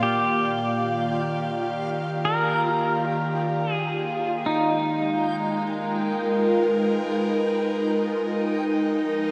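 In free time and Eb major, this luminous ambient excerpt moves from Ebmaj9 to Abmadd9 as a twangy, fingerpicked pedal steel guitar sings a short slide melody up front with volume swells through shimmer reverb and delay until 6.6 s, while an evolving, detuned wavetable pad holds slow-attack chords under chorus and shimmer, and from 1.0 s a reversed, granular swelling texture glows softly in the background, all steeped in a lush hall reverb with a dreamy, soft-topped sound.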